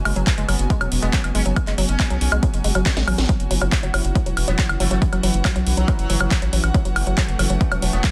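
Psychedelic trance at 139 BPM in F# minor, driving and psychedelic, where a punchy up-front electronic kick and a techno kit of cracking snare, metallic hats, handclaps and woodblock (with a drum fill at 2.9 seconds) join a round, deep analog bass, a woody wave-folded pluck riff with chorus and delay, a pulsing gated texture of sustained chords, a dark string section fading in beneath, and, from 1.0 seconds, a metallic wobbling FM bass line sitting in the background, all under a dense, heavily limited modern master.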